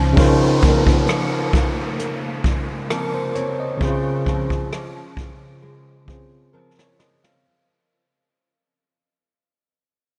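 A jazz brush drum kit sits up front in this dreamy, smooth contemporary R&B fragment, cut from a longer piece, its natural studio-room sound carrying a medium-tuned snare, a boomy kick, rim clicks and hi-hat, all roughened by a vintage 12-bit sampler grit. At a relaxed 66 BPM in 4/4 with a light 54% swing on the sixteenths, the music rests on a single lush Dbmaj13 chord in Db major, tuned to A4 = 436 Hz. A clean tine electric piano, also up front and heard through its built-in speakers, supplies a warm accompaniment. Beneath it, a full-bodied, deep classical nylon-string guitar plays fingerpicked arpeggios colored by ensemble chorus and delay, while an electronic downlifter adds a faint sound effect. The drums enter at 0.2 s and close with a fill at 6.5 s as the passage fades out through 7.4 s. A huge ambient reverb with a 5.6-second tail soaks the mix, giving it a hazy, floating atmosphere.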